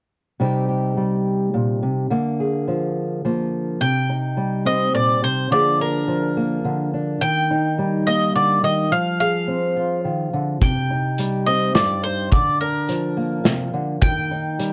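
A straight three-four pulse at 106 BPM carries this yearning, bittersweet indie folk piece in C minor, cut from a longer track, with an arrangement that builds as it goes. A fingerpicked old ladder-braced acoustic guitar opens at 0.4 seconds as the accompaniment, sitting up front with a dark, boxy tone and the character of old strings. At 3.8 seconds a picked mandolin takes the melody, its doubled strings sounding woody and close. The loose indie drum kit arrives at 10.6 seconds with a punchy kick, a medium-tuned snare and hi-hat, set up front in a small, pumping room. The harmony moves from C minor through Bb7/D, Eb and F minor before circling back to C minor. The recording is coated in light reverb and worn cassette tape whose warbly pitch drift gives it a faded quality.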